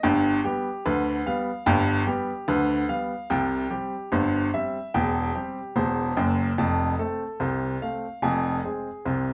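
Ragtime piano in C major at 73 BPM in 2/4, with a light 16th-note swing giving this jaunty, playful fragment of a longer piece its bounce. A single upright piano plays solo for the full 9.3 seconds, ranging from E1 to A5, its woody, intimate tone sitting up front with audible action noise and long sustain. The harmony moves from G7 to C at 3.3 seconds, then through C/E and F before ending on Fm, all in a small room with moderate reverb.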